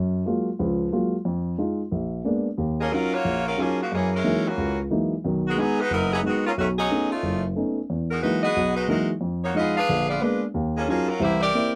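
Jazz with a brassy, dramatic swing, cut from a longer piece, opens on a dark, woody upright piano laying down lush extended chords alone before a bright, tight saxophone section enters at 2.8 seconds with a soft-attacked melody over a moody, shifting progression in a snug booth ambience.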